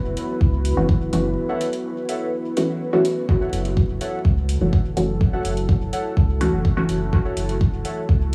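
Cavernous and hazy, this dub techno excerpt sets an overdriven, up-front kick and metallic hi-hats over a round, deep analog bass and a moody, detuned ambient pad on a sustained F#m7, while muted, mellow chord stabs soaked in phaser and dub echo enter at 0.8 seconds and warbling, nostalgic lo-fi synth keys join at 1.5 seconds, all wrapped in vinyl crackle and small-room ambience.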